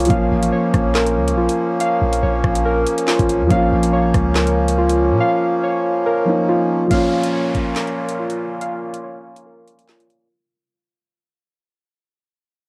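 Drill hip hop in Bb minor at 141 BPM with a menacing, ominous half-time feel, where reedy accordion chords and a dark baby grand piano sit under cassette-tape grit, warbling, detuned lo-fi synth keys spin arpeggios through chorus and tape echo, a deep sine 808 bass holds long notes until 5.2 seconds, and an electronic drill kit of knocking kick, woody snare, rim clicks, handclaps and metallic hats drives on before a brief silent gap gives way at 6.9 seconds to a filter sweep, a faint electronic downlifter and a fade-out.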